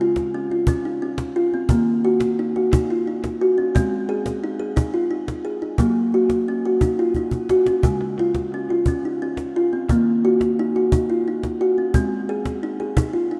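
World meditative music in a gentle, hypnotic 6/8 lilt, heard as an excerpt from a longer piece, built on a cycling progression of Db, Ebm, Ab and Gb. Up front, a thumb-plucked kalimba spins ringing arpeggios with a hollow, vintage, band-limited tone bathed in shimmer reverb, while a close, dry cajon with faint snares keeps time through an analog delay and drops in a short fill at 7.2 seconds. A lush plate reverb and an echo-heavy mix wrap the pair in a soft, trance-like haze.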